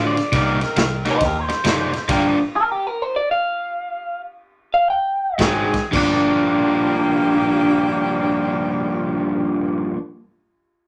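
A slightly broken-up, lo-fi electric guitar through a small old amp carries the phaser-tinged melody up front in this soulful, smoky electric blues shuffle in G minor, cut from a longer piece and swinging in 4/4 somewhere between 108 and 136 BPM. A bright, compressed overdriven guitar picks the riff, a dark, round fingered bass with a foam-muted tone holds the low end, a vintage kit with a punchy kick and rolled-off top works its crash, ride, snare and kick, and a jazzy saxophone section adds vibrato-laden stabs. These parts drop out around 2.4 seconds while the tempo slows and the lead guitar plays alone until they return at 5.4 seconds, when the drums come back only briefly, all framed by moderate club reverb over Cm7, Gm7 and Ab7 changes.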